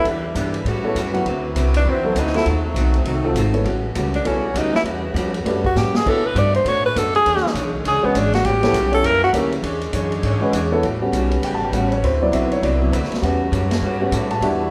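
Heard live in one studio room with a generous wash of reverb, this joyful, energetic big band swing excerpt opens with a forceful, up-front tenor saxophone solo, full of vibrato and smooth on top, over bright sustained chords from a saxophone section in the background. A woody pizzicato upright bass, a warm, natural grand piano, a clean picked hollow-body electric guitar set back in the mix, and a vintage drum kit with dark cymbals and a punchy kick keep the swing driving, with a drum fill at 5.8 seconds. The piano takes over as soloist at 10.8 seconds, carrying the excerpt to its cut at 14.7 seconds.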